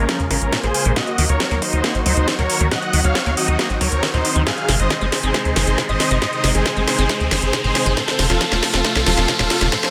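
Uplifting trance with a euphoric, bittersweet mood, this short cut from a longer piece is a build-up: a huge, detuned supersaw lead carries the melody up front over a lush, thick unison pad with slow-attack chords, a squelchy, resonant acid bass arpeggiating in the background, and a tight, punchy sequencer bass driving the low end, each with sidechain pumping and the chords moving from Bbm7 through Ebm and Ab to F. A house drum kit plays a drum fill throughout, with a cracking snare and metallic hats up front, while a very quiet electronic kick adds a tape-warm thump underneath. A riser enters at 3.7 seconds and a noise sweep arrives at 9.7 seconds, all set in light reverb and digital ambience.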